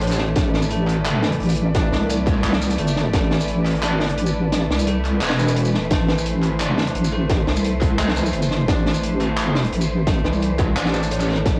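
A lightly reverberant home cassette recording opens on this dark, spacious half-time drum and bass, cut from a longer piece, with a deep, wobbling square-and-sine bass sitting up front under a crunchy, saturated breakbeat kit of snare, hi-hat, shaker and handclaps with a rolled-off top. A distorted electronic kick, tape-warmed and re-recorded in a large room, enters at 0.4 seconds, steps away, then returns at 5.9 seconds. In the background, a dry, woody koto plays fingerpicked arpeggios through analog delay, a bowed chamber cello section holds intimate, vibrato-laden chords with 12-bit sampler grit and sidechain pumping, and from 1.4 seconds a very quiet reversed, granular texture adds a dreamy, detuned haze.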